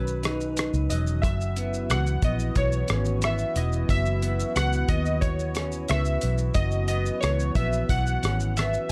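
Warm analog keys carry a hazy, laid-back bedroom-pop melody with lush chorus and tape echo over a twangy, slightly broken-up electric guitar through a small old amp with subtle chorus and vibrato, a hollow, flute-like pad and an up-front, foam-muted fingered bass moving from Bmaj7 to F#7sus4, while a cloth-damped, thuddy drum kit with tight kick, rim click, hi-hat and shaker joins at 0.1 seconds in this dark, dry indie-pop fragment cut from a longer piece.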